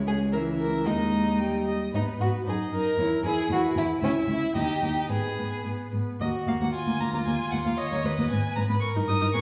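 A quick, restless classical-period string quartet movement at 114 BPM in 2/4, played with rubato, moves from G# minor to a dramatic turn into Eb minor at 6.2 seconds, with a vibrato-laden first violin carrying a focused, smooth-topped melody over a rich second violin line, a distant viola accompaniment and a close, intimate cello bass with soft attack and airy bow, all set back in a wet recital hall.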